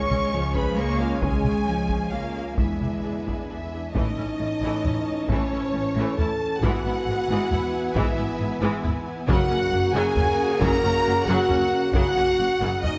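The mellow French horn section stands out in this adventurous, triumphant cinematic orchestral cue, holding sustained chords at 135 BPM in a straight 3/4 with a warm trombone section tucked beneath it in the background. Two violin sections carry the melody and a second line high above, one soft-attacked and lush in the background, the other focused with a smooth top. A rich string section adds further sustained chords, a studio viola section supplies smooth, even accompaniment, and a clear, intense cello section joins a rich double bass section on the bass line. A taiko ensemble struck with hard sticks plays in a live room, while a very quiet timpani with hard mallets sounds only briefly, from 9.3 to 9.9 seconds. The harmony moves from C# through E7 to A, E/G# and F#, and a moderate concert hall reverb lends the ensemble its grand space in this fragment of a longer piece.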